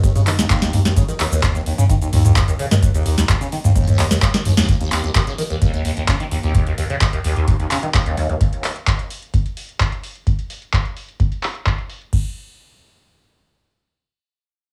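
Acid house at 129 BPM in a straight 4/4, driving and raw, cut from a longer piece with light studio reverb. A squelchy, resonant sawtooth acid bass carries the riff up front through phaser, overdrive, lush chorus and digital delay, with a filter sweep from 4.7 to 8.4 seconds before it stops. A deep, tape-warm electronic kick and a booming analog drum machine with crisp snare, metallic hats, handclaps, cabasa, toms and crash under low-pass filters play until 12.2 seconds, with a drum fill from 4.3 to 4.7 seconds and a band accent at 4.6 seconds.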